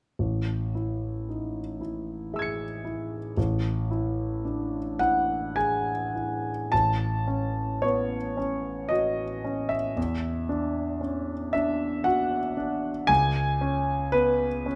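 Impressionist classical solo piano, this hazy, luminous excerpt drifts in A major at a slow 50-58 BPM in 3/4, with a freely breathing rubato feel. A single concert grand carries everything from 0.2 to 14.8 seconds, spanning A1 to C#7 and tuned to A4 = 439 Hz. Its tone is warm and intimate, with deep bass, a natural character and action noise audible through the close, detailed microphones that keep the instrument up front. The harmony moves from Amaj7 through E7/A, then shifts at 6.7 seconds into a second passage of A6 and Esus2 before settling on C#5. A moderate recital hall reverb, lasting about 1.7 seconds, wraps the sound in a soft, glowing space.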